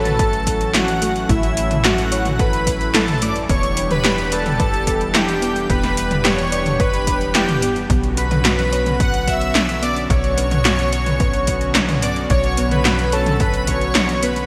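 Synthwave at 109 BPM in B minor, driving and nostalgic, where a smooth detuned supersaw carries the melody alongside an airy, dreamy sine lead with vibrato, a warm chorused analog pad pumping against the kick, a round tine-like FM pluck tracing arpeggios in the background, a tight sawtooth sequencer bass, and up-front overdriven 80s electronic drums with handclaps, metallic hats and a gated snare and toms beside a punchy kick, all moving through A6, Em7 and Bmadd9 in a bright 1980s-style digital production with a lush hall reverb.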